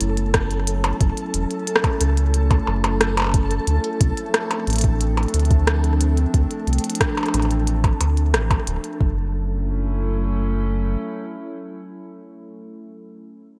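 Melancholic and glitchy, this IDM piece moves at 90 BPM in a straight 4/4, with a bright, 1980s-style digital sheen and a light digital ambience. A warbling, nostalgic pad drifts on sustained chords built from square, triangle and sine waves, its wave-folded tone softened by chorus, built-in reverb and a gritty 12-bit sampler character. Beneath it, an up-front analog bass blends sawtooth and sine into a round, deep, dark sustain with a fast attack. The glitchy kit scatters clicky hi-hats, percussion blips and a rim click, joined by a soft electronic kick; both drum parts are overdriven and re-recorded in a small room. A flickering, granular texture of detuned triangle tones sits mellow in the background with reverb, while the harmony moves from F#m7 to Dm7 and returns to F#m7 at 9.0 seconds. At that point the kit and texture stop, with the kick following a moment later, leaving the bass to hold until 11.0 seconds and the pad to ring on alone until 12.4 seconds.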